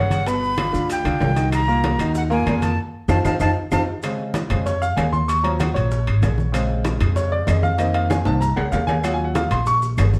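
Danceable and fiery, this 192 BPM salsa passage opens with a breathy, chiff-edged jazz flute melody in plate reverb that stops at 3.8 s amid a band accent and drum fill, and the brilliant, up-front grand piano takes a solo from 4.0 s over growly pizzicato upright bass, while damped low-tuned congas, tight high bongos, ringing saturated timbales, woody claves and grainy maracas fill out the percussion in a reverberant room heard from further back.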